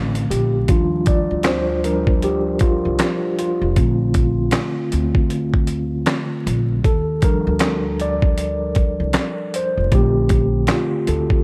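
Vinyl crackle runs alongside a light reverb and digital ambience, giving this short cut from a longer lo-fi hip hop piece a mellow, nostalgic air. At 78 BPM in 4/4 with a swung sixteenth-note feel, it sits in Eb lydian, with the chords moving between Bbmaj9 and Ebmaj9. A mellow tine electric piano carries the accompaniment and a solo throughout. Its clean tone comes through built-in speakers, shaded by cassette tape and a low-pass filter, and sits up front. An acoustic upright bass, played pizzicato on steel strings, adds a woody, growly bottom. During a brief opening break, the dusty soul sampler-style drum kit enters at 0.2 seconds: a gritty, compressed kit re-recorded in a small room, with a thumpy kick, medium-tuned snare, hi-hat and handclaps placed up front.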